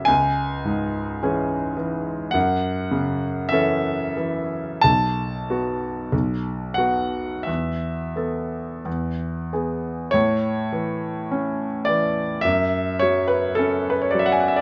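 A tender, dreamy romantic nocturne for solo piano opens at once on a C-sharp minor chord, the grand piano warm, smooth and vintage in tone, placed up front and heard through close, detailed microphones with light reverb. Played slowly and with free rubato, the harmony drifts through F-sharp minor seventh and a suspended E before settling on E, and at 10.1 seconds the music shifts into a new section that opens on A. The piano spans from the low bass up into the upper middle register, and this short excerpt, cut from a longer piece, ends at 14.6 seconds.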